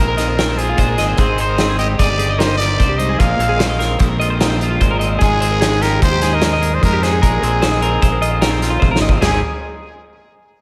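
A raspy, growling trumpet leads this wistful, bright math rock and midwest emo fragment, carrying the melody over picked twelve-string electric guitar arpeggios, a twangy accompanying electric guitar and a fuzz-laden fingered bass, with a loose indie drum kit joining at 0.2 seconds. The trumpet sits present and punchy, with light vibrato, a pop-style delivery and a slapback echo. The twelve-string guitar rings clean and compressed, bathed in spring reverb and slapback echo, while the other guitar stays warm and tucked into the background. Up front, the overdriven bass growls, and the roomy, distant-sounding kit pairs a tight kick with a medium-tuned snare, hi-hat, splash cymbal and toms, playing a drum fill from 8.8 to 9.2 seconds in the 5/4 metre. Chords cycle between Bb9sus4, Abmaj7 and Fm9/Ab before landing on Ab as the section shifts at 9.2 seconds, all within a lush hall reverb that gives the mix a big arena sound.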